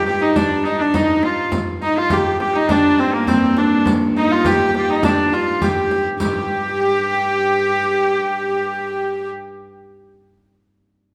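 Heard in a reverberant recital hall, this short cut from a longer piece is a medieval dance in a straight two-beat metre with a mysterious, ancient air. A hurdy-gurdy carries the melody up front; its wheel-bowed, keyed sound is nasal and earthy, with an airy bow and a boxy body. Alongside it a shawm and a Celtic harp share a second line: the shawm has a smooth top and folk-style vibrato, while the thumb-plucked harp rings in the background. A bowed, fretted viola da gamba holds a low drone on G, woody and biting with light vibrato. A close, dry frame drum played with soft hands and a distant riq with bright jingles and hard hands keep time until 6.5 seconds, just after a new section begins at 6.2 seconds, and the melodic parts carry on to the end.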